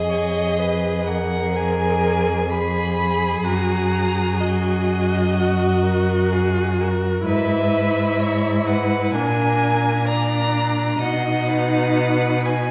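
Yearning and melancholic, this slow romantic movement for string quartet unfolds in Eb minor at 63 BPM in 4/4, breathing with a rubato feel across a 12.7-second passage cut from a longer piece. The first violin carries the melody between Eb5 and Cb6, its bowed tone rich and focused with vibrato. Beneath it, the second violin plays a clear, somewhat distant second line. The viola fills in the accompaniment from close by, expressive, with a soft attack, vibrato and gliding portamento. The cello holds the bass low and up front with a smooth, even sound, while the harmony drifts from Fm7b5 through Ebm/Gb and E/G# to Bb7 before resting on B. All four players sound from further back in a wet recital hall, whose reverb lends the ensemble a lingering glow.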